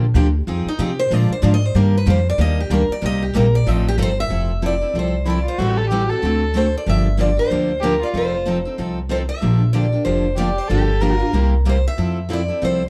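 This is lively, swinging acoustic string swing in the jazz manouche style, moving at 188 BPM in 4/4 with a gentle swung eighth-note feel, and it is cut from a longer piece. Two picked steel-string acoustic guitars carry the accompaniment throughout, and the upright bass sits up front with a woody, thumpy pizzicato tone from gut strings. A third picked guitar takes the melody from 0.7 s, its line given a slapback echo, and the opening stretch plays as a guitar solo over chords such as Fm7, Bb7 and Ebmaj9. At 4.3 s the music settles into F major for a new section, moving through Fmaj7, Am7, D7, Gm7 and Bb6 before a C7 turnaround returns to Fmaj7. A dark violin joins at 5.3 s as a second line, played by one player with an airy, sul tasto bow, soft attack and light vibrato, sounding intimate and close. The guitars range from bright and boxy to a warm concert tone, and the whole sits in a dark, warm production with light reverb.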